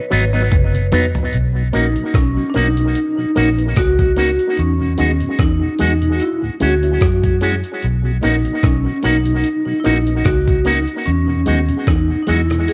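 A light reverb and the soft haze of a home cassette recording wrap this sweet, smooth lovers rock reggae excerpt in B major at 74 BPM, where a ringing, metallic vibraphone with fast motor vibrato carries the melody over a warbling FM electric piano with chorus, a very quiet tonewheel organ on slow rotary, twangy envelope-filtered guitar stabs, a round, foam-muted bass and a gritty, thumpy sampler-style drum kit whose fill from 0.5 to 1.3 seconds leads into chords moving through Bmaj7, Emaj9 and Dmaj9#11.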